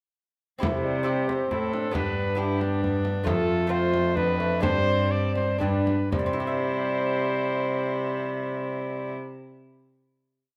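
A clear cornet with light vibrato leads this short, courtly Renaissance-style consort dance in triple time, entering at 0.6 seconds together with a gut-strung viola on a second line, a mellow, distant bassoon holding inner chords, a nasal bowed cello on the bass and a delicate, bright lute rolling chords in the background. A deep frame drum keeps a dance rhythm as the stately music slows from 2.6 seconds, then falls silent at 6.4 seconds while the ensemble settles onto a sustained final chord. A stone room lends a roomy reverb, and the lute rings on alone to close at 9.5 seconds.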